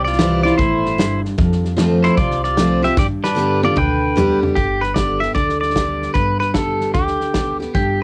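Honky-tonk and classic country with an easygoing, nostalgic swing, cut from a longer home-recorded piece in a lightly reverberant space. A twangy, fingerpicked pedal steel carries the melody with slide and volume swells, sitting up front beside a bright, full-bodied picked dreadnought acoustic guitar, while a woody, thumpy gut-string upright bass and a natural small-room drum kit with a punchy kick keep the groove. The pedal steel, acoustic guitar and drums carry a cassette-tape colour over a C, F, G progression, and a drum fill from 3.0 to 4.6 seconds leads into the second section.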